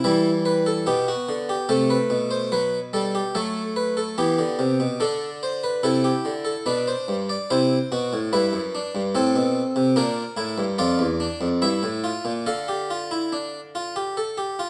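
In a steady 3/4 at 72 BPM with a straight feel, this short passage from a longer baroque-style three-part fugue moves with a contemplative, serious gravity. A single French-style harpsichord carries all three voices across a span from E2 to F5, its plucked tone round and warm from one set of strings and placed up front. The music sits in A minor, with harmonies such as Em, Am/C and B5 at the start. A second section begins at 5.0 s, passing through D5, G/B, C and Amadd9. It then turns toward D minor at 10.0 s by way of Gm/Bb and A5/G, settling on Dm. A moderate stone-room reverb surrounds the instrument with a sober resonance until the passage breaks off at 14.7 s.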